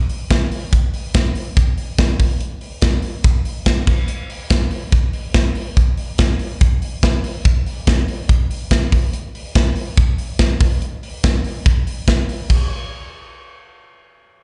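Heard as a live gig through the venue's PA, with moderate club and recital-hall reverb and a rolled-off top end, this nostalgic, bright indie pop clip at 143 BPM in a straight 4/4 features an airy, polished, up-front acoustic studio drum kit with a punchy kick, medium-tuned snare, hi-hat and crash cymbal playing from 0.1 to 12.6 seconds, stopping just after a new section begins at 12.5 seconds.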